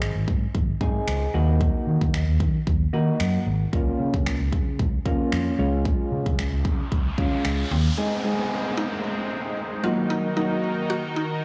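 A dark, foam-muted electric bass anchors this confident, driving dance-pop excerpt, its round amped tone pushed up front and pumping against the sidechain at 113 BPM in a straight 4/4, centred on Eb dorian. A punchy, tape-toned electronic drum kit of layered kick and finger snaps drives beside it, with soft clipping on the snare, while gentle, mellow electric-piano-like synth keys with chorus and sidechain pumping carry the accompaniment through a chord cycle moving from Ab to Ebm, Bbm/Db and Db. A riser arrives at 6.5 seconds to lift into the next section at 8.0 seconds, where a lush, thick, detuned unison pad swells in with chorus and pumping, sustaining chords over a return to Ab and Ebm. A woody, percussive FM mallet-like pluck with a noise layer, chorus and digital delay picks up the melody from 7.7 seconds as the drums and then the bass drop away. The whole recording sits in light reverb with a blown-out, overdriven sheen.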